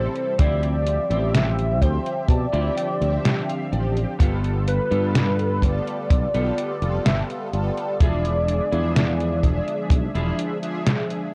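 In this nostalgic, woozy vaporwave fragment, a velvety, detuned synth lead with vibrato and tape echo, dark sawtooth synth brass colored by phaser and ensemble chorus, and a very quiet warbling tape-like pad sound from the first moment, joined an instant later by a straight 4/4 pulse from a dry, punchy kick and a detuned 8-bit drum machine's sampler-style hi-hat and snare. A round fretless electric bass sits up front, and a clean picked electric guitar riff in lush chorus plays a fill from 1.3 to 4.2 seconds. All of it is set inside a worn cassette ambience with drifting pitch over Dm11, G9 and E7b9 chords.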